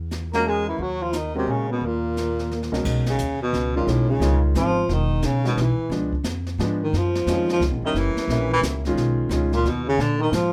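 Light reverb hangs over this smoky, swinging small-group jazz cut, taken from a longer piece at 176 BPM in a brisk 3/4, where a woody pizzicato upright bass sits up front beside brushed drums with dark cymbals and a boomy kick. A baritone saxophone carries the melody with a warm subtone, soft attack, scooped notes and light vibrato, while a buzzy, thin trombone in a metal mute traces a second line in the background and a natural-sounding baby grand piano comps until 9.5 seconds. A short drum fill at 2.5 seconds sets up a band accent at 3.0 seconds, as the harmony shifts from Eadd9 and Ebm7 into Bmaj9 and altered chords such as Db7b9 and Gb7b9.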